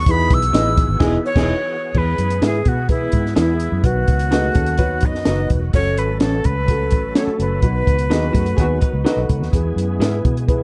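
A straight, uptempo 4/4 groove from a dry, punchy cocktail drum kit and a round, foam-muted electric bass drives this joyful 1960s-style soul excerpt, where a breathy, bright jazz flute with tape echo carries the melody over woody upright piano, gritty, very quiet rotary-speaker organ chords, slightly broken-up lo-fi guitar stabs, a clean hollow-body guitar riff in the background from 4.3 seconds, and a distant, dark horn section adding a second line at 1.0 and 8.3 seconds, in a warm production with light reverb.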